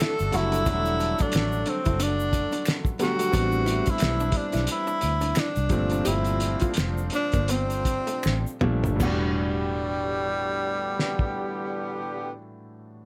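A breathy, whispered tenor saxophone leads this soulful, smooth neo-soul excerpt in E minor at 76-90 BPM with a 16th-note swing, over warm grand piano, with a hollow-body archtop guitar and mellow horn stabs in the background, a cloth-damped, thuddy drum kit with a fat snare and dark cymbals up front, a round, foam-muted fingered bass entering at 0.2 seconds, and a faint egg shaker with finger snaps, all under light reverb as the tempo slows from 3.3 seconds and a drum fill at 8.2 seconds leads back to Em11 at 9.0 seconds.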